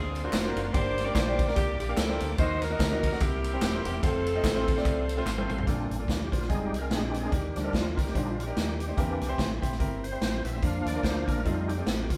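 A swung 4/4 groove drives this soulful, jubilant uptempo gospel clip, with a punchy, up-front big-band drum kit, a round, dark fingered electric bass, and tambourine and handclaps tucked in the background. A tight, bright saxophone section carries the melody over clear grand piano and sustained chords from a reedy tonewheel organ with key click, chorus vibrato and fast rotary speaker. After a drum fill at 5.3 seconds, the horns and percussion drop away and the organ takes a solo from 5.7 seconds, all in a live band sound with moderate large-studio reverb.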